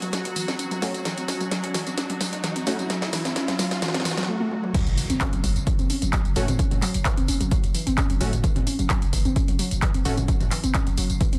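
A punchy, layered electronic kick drum, re-recorded in a small room, lands at 4.7 seconds to mark the drop in this relentless, dark stretch of driving peak-time techno, cut from a longer piece at 130 BPM in straight 4/4 and F# minor. Before it, a build-up runs from the start. An up-front techno drum kit plays a fill with a cracking snare, metallic hats, handclaps, tambourine, toms and crash, its hats, percussion, toms and cymbals pumping against the sidechain. A swarming, granular drone glows bright and tense until 4.3 seconds, while a riser climbs and a filter sweeps across the supersaw stab. A warbly, dusty pluck riff runs throughout, lo-fi and mellow with chorus and tape echo, and full-bodied supersaw stabs return with their own tape echo in the drop. At the drop an impact rings until 6.6 seconds, and a growling, buzzy 808-style bass holds F#1 in the background with tube saturation, all under a light reverb.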